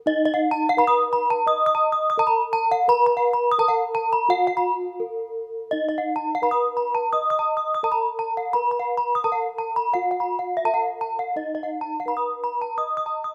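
Gamelan at 85 BPM in a straight 4/4, this brief cut from a longer piece has a brilliant, shimmering mood, with a short break from 4.7 to 5.7 seconds. One bronze metallophone carries the melody in a mellow, dark tone from padded disc mallets, while a second, louder metallophone plays arpeggios in a higher register, struck with a horn mallet for a bright, ringing edge. Both instruments sit up front and use paired tuning that creates shimmering beats, set in light reverb with small-room ambience in a rough home demo mix.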